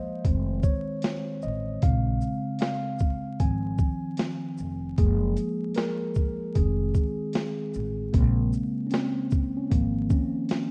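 A swung 76 BPM groove in 4/4 drives this nostalgic, hazy lo-fi hip hop excerpt in Bb minor: a mellow tine electric piano takes the lead from 0.0 seconds through cassette tape and low-pass filtering over chords such as Fm7, Bbm9 and Gbmaj9; a gritty, compressed, sampler-style boom bap kit with a thumpy kick, medium-tuned snare, hi-hat and shaker joins at 0.2 seconds; and a woody, growly pizzicato upright bass follows at 0.3 seconds, all sitting up front in a rough home-demo mix with digital ambience, vinyl crackle and a dulled top end.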